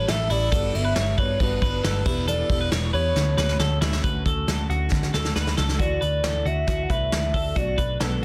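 Jangly indie pop with a youthful, bright mood, this short cut from a longer piece moves in a straight four-four feel through rich seventh chords, settling on an airy Dadd9 and then Bm7 near the close. A warbling, nostalgic synth lead carries the melody with a fast attack and sustained notes, its blend of square, sawtooth and sine tones given a wave-folded edge, vibrato and chorus. Underneath, a jumbo steel-string acoustic guitar fingerpicks a full-bodied accompaniment with fresh strings. A clean, twangy twelve-string electric guitar adds compressed, picked arpeggios, and a dark, round, foam-muted vintage bass anchors the low end. A roomy brushed drum kit comes in at 0.1 seconds, with a tight kick and a medium-tuned snare that carries a touch of soft clipping, and fills at 3.2 and 4.9 seconds. Light reverb surrounds the parts, and the master is dense and heavily limited in a modern style.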